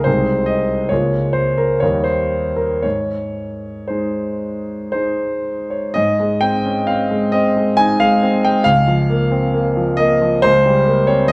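A clear, up-front concert grand rings in a moderate recital hall, its deep bass and long sustain given a natural bloom by the room. This passionate, warm romantic character piece for solo piano moves in a rubato 3/4 at roughly 56-72 BPM in Ab major, spanning C2 to Ab5 and tuned to A4 = 441 Hz. The short passage, cut from a longer work, states its opening idea and then returns to it at 6.0 seconds, with harmonies moving from Ab/C through Eb and closing on a Bbm69/Db chord at 10.4 seconds.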